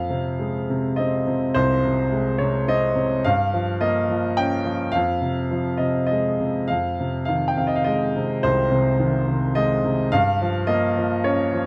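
Close, detailed microphones and light reverb put a clear, woody upright piano up front, its long sustain ringing through this brooding, cool passage of lyrical classical solo piano. In a rubato 3/4 with uneven beats, the piano spans C2 to G5 for the full 11.7 seconds, alternating between Fm7 and Gm7b5 harmonies. It is cut from a longer piece.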